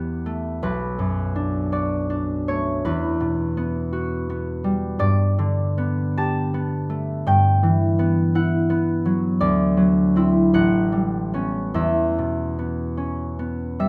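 Close, detailed microphones and a light reverb place a solo concert harp up front, its fingerpicked strings ringing warm across a range from A1 to A5. This gentle, mysterious classical excerpt in E minor moves in a rubato 6/8 at roughly 47-57 BPM by the dotted quarter, drifting through colored chords such as Bm9, Emadd9, Gadd9 and D9. It reaches Em6 at 11.8 seconds, lasting 13.9 seconds in all as a fragment of a longer piece.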